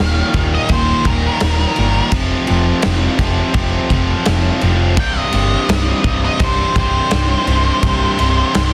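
Dry, dense and heavily limited with a faint mains hum, this anthemic, restless quiet-loud alternative rock excerpt at 84 BPM in 4/4 moves over Eb5, F5 and C5 chords: an octave-fuzz lead guitar takes a dark, picked solo through the full 8.7 seconds, a bright, double-tracked distorted guitar drives a tight low riff up front, a round hollow-body short-scale bass adds amped depth, and a big-room acoustic drum kit with a punchy kick, medium-tuned snare, crash cymbal and smooth, rolled-off top holds the beat.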